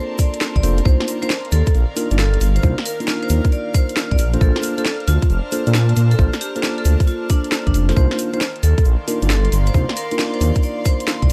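Bouncy and skippy, this short cut from a longer UK garage track rides a two-step groove at 135 BPM in C dorian, its sixteenths swung hard. A hard-mallet vibraphone carries the melody with a metallic, ringing tone and tape echo, while a mellow tine electric piano places clean stabs through delay and a bright, earthy chamber string section adds bowed texture. High above, an ethereal, airy pad holds sustained chords with ensemble chorus and its own reverb, pumping against the kick from the background. The drums arrive at 0.2 seconds: a tight, overdriven electronic kick sits up front beside a layered garage kit with a cracking snare and hi-hat, and a grainy egg shaker sits close but low. At 0.6 seconds a dark, detuned saw bass enters with a deep, rumbling, beating tone, while the harmony alternates between Bbmaj9 and Cm11 under a dark, warm studio reverb.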